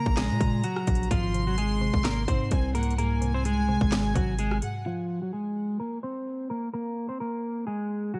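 A dark, slightly broken-up electric guitar carries the melody up front from the start, joined by a reedy, gut-string chamber violin section with tape echo and a woody FM synth pluck in the background, all over a menacing, eerie Bbm to Ab progression. From 0.1 seconds a hard-clipped, overdriven trap kit with a sharp snare, metallic hats, handclaps and rim clicks drives a half-time 128 BPM groove, and a heavy, distorted 808-style bass rumbles beneath. By 4.9 seconds the other parts have dropped out, leaving the guitar alone on a Bb5 chord under a filter sweep until the cut at 8.2 seconds.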